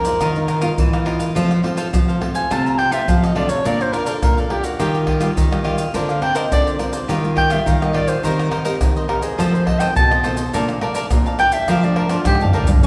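A dark soprano saxophone with vibrato and scooped notes leads this lively, sunny samba and choro in Bb major at 105 BPM, sounding distant and roomy over crisp, bright picked cavaquinho, a fingerpicked nylon-string guitar in the background, a second nylon-string guitar playing a deep classical bass line with finger squeak, and up-front maracas, pandeiro, tamborim and deep surdo played with soft hands; a drum fill arrives at 12.3 seconds before a breathy tenor saxophone enters with a subtone note at 12.8 seconds, all inside a recital-hall reverb in this excerpt cut from a longer piece.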